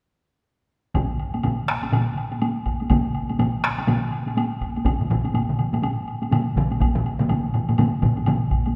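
Driving and ceremonial, this short excerpt of Japanese traditional taiko ensemble music moves at 123 BPM in 4/4 with a swung sixteenth-note feel. Several taiko ensembles play together from about 0.9 seconds to 8.8 seconds: one is struck with hard sticks and sounds compressed and saturated, another is played with heavy sticks and miked close, and others are hit with hard sticks in a small room, one of them sitting in the background. A quieter woody woodblock plays alongside them from the start, and a long, wet concert-hall reverb surrounds the ensemble.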